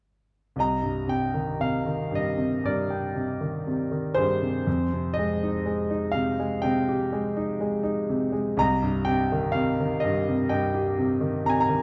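Dark and melancholic, this brief classical fragment of lyrical solo piano unfolds in a free, rubato 4/4, cut from a longer piece. A concert grand sits up front with a smooth, vintage character and deep bass, moving through Cm7, Fm9 and back to Cm between 0.6 and 11.8 seconds. A moderate recital hall reverb and a dark production surround the playing.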